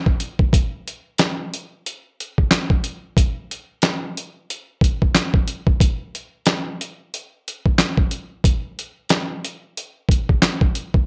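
A dusty, compressed soul-sampler drum kit sits up front from 0.1 to 11.1 seconds, its thumpy kick, fat snare, hi-hat and handclaps swinging on the 16ths at 91 BPM in 4/4, giving this gritty, reflective hip hop excerpt a tape-warm, large-room character within a rough, dry home-demo mix.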